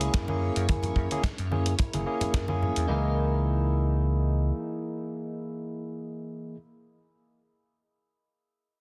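A punchy, round slap bass sits up front of this sensual, groovy nu-disco excerpt at 109 BPM in C# dorian, joined by a barky tine electric piano with dub echo and sidechain pumping, a slightly broken-up picked guitar riff with 12-bit sampler grit, a lush string machine pad in the background until 2.9 seconds, a tight dry kick, a gritty sampler-style hi-hat and snare, and ringing congas, as the chords move from F#9 to C#m69 in a dense, heavily limited master.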